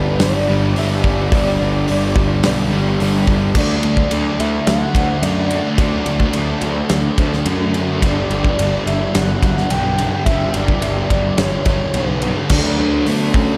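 Brooding and melancholic, this short cut from a longer shoegaze and dream pop rock piece moves at 107 BPM in a straight 4/4, its chords shifting between G and D. A soft, round synth lead carries the melody, layered with a sub octave and given a mellow, wave-folded sustain with vibrato, chorus and delay. Beneath it, three guitars play riffs: a thick, dark fuzz guitar with distortion and lush chorus and a crunchy overdriven guitar colored by reverse reverb, both in the background, and a very quiet, double-tracked semi-hollow guitar with a hollow-body tone. A punchy, fuzz-laden picked bass anchors the low end, while a big acoustic rock kit sits up front, smooth and dark, with a punchy kick, a medium-tuned snare, hi-hat, ride and crash, entering at 0.2 seconds. The whole mix is soaked in a huge ambient reverb with a 7.4-second tail, giving it a dreamy feel.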